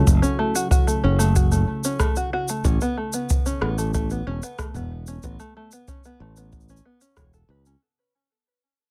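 A plunky, twangy open-back banjo sits up front with fingerpicked arpeggios soaked in tape echo, giving this short, playful and pastoral folktronica cut at 93 BPM in A major (tuned to A4 = 436 Hz) its character. Beneath it, a growly, punchy fingered electric bass and a dark, boomy acoustic kick drive a straight 4/4 groove, while a tape-warm organic electronic kit adds rim clicks, shaker and toms. A detuned sawtooth pad with chorus and 12-bit sampler grit holds sustained chords in the background, moving from F#m7 to Aadd9 at 2.6 seconds, all in a dry room as the whole passage fades out.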